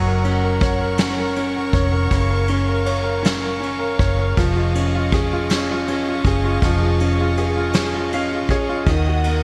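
A romantic, swaying six-eight pop ballad excerpt, built on an up-front grand piano with clear, intimate tone, audible action noise and long sustain, over a round, foam-muted fingered electric bass and a smooth bowed string section holding rich vibrato chords above. Brushed drums enter at 0.2 seconds with a punchy kick, dark cymbals and a rolled-off top, their gated reverb sitting inside a small-room ambience and bright 1980s-style digital production. The harmony moves from F# to C#add9/E#, and a piano fill from 7.7 to 8.9 seconds leads into D#m.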